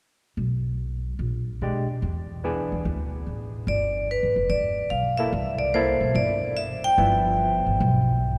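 Swinging and sophisticated, this short excerpt of small-group swing and bop moves at 146 BPM in 4/4 with a firm swing feel, centred on G mixolydian. The upright bass opens at 0.4 seconds, its pizzicato tone woody and thumpy, sitting up front with the warm body of steel strings. A hollow-body jazz guitar joins at 1.6 seconds as accompaniment, clean and dark in a fingered, electric voice, moving through changes such as Bb6, E7 and D5. At 3.7 seconds the vibraphone takes the melody with medium hard mallets and the motor off, close-miked and dry, its metallic, ringing notes full and forward in the mix. Under the vibraphone the harmony moves from Gadd9 through C13 to G13, all bathed in the long, cathedral-like reverb of a church or concert hall.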